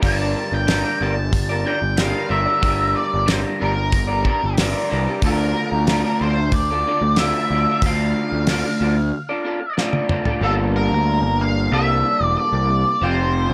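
A straight 4/4 groove drives this trippy, hypnotic psychedelic rock excerpt: a cloth-damped, thuddy drum kit with a fat snare and tight kick sits under a fuzzy, overdriven picked bass and a slightly broken-up, lo-fi guitar playing a flanged riff through a small old amp. Above them, a dark octave-fuzz lead guitar carries the melody through wah, distortion and slapback echo as the chords move from Gm to Dm, all within a small room. A break from 9.1 s closes with a drum fill, after which the drums stop at 10.4 s and the guitars and bass continue over Gmadd9 and Fsus2.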